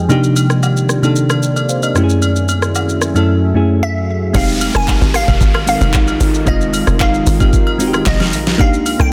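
A bell-like FM electric piano and a dark, warbling ambient pad with sidechain pumping open this late-night amapiano excerpt, joined by a smooth R&B drum kit with a knocking kick, a deep snare with soft clipping and metallic hats, plus quiet agogo bells and woodblock. A crystalline wavetable pluck with tape echo arrives at 3.8 seconds, and the drop at 4.3 seconds brings in a tight, punchy log drum bass along with a downlifter in the background. The chords move from Cm9 through Gbm9 and Fm9 before returning to Cm9, and the dense, heavily limited modern master carries light reverb.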